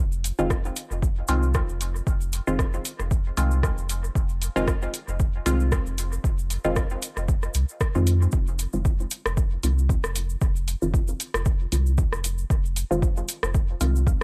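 A dry, echo-heavy mix with little reverb opens this hypnotic, deep dub techno excerpt, cut from a longer piece and set at 115 BPM in 4/4 with a 55% swing on the sixteenths, in F minor, sitting on a single Fm7 chord. A round, sine-based sub bass sits up front from the start, its sustained tone pumping under sidechain compression. Above it, a muted sawtooth chord stab with a plucked filter shape and short decay is treated with chorus, phaser, sidechain pumping and trailing dub echo. A grainy, bright cabasa recorded close enters at 0.1 seconds, followed at 0.2 seconds by a soft analog rhythm box whose metallic hi-hats and rim clicks carry their own dub echo. A punchy, layered electronic kick re-recorded in a small room arrives at 0.5 seconds and stays prominent in front as the same section repeats through to the close.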